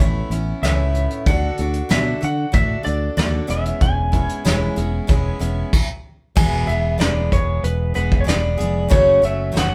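Nostalgic and open-road in mood, this short folk rock and heartland rock excerpt moves at 94 BPM in a straight 4/4, with a bright, full-bodied jumbo acoustic guitar picking the chords up front over a round, dark fingered electric bass and a soft brush kit with dark cymbals and a tight kick. A compressed, slightly broken-up electric slide guitar played with fingerpicks carries the melody, and the band sounds like it is playing live together in one room with light reverb. The progression moves from Aadd9 through D and E6, pauses in a brief stop from 5.7 to 6.4 seconds, then shifts to a new section on E before landing on F#m.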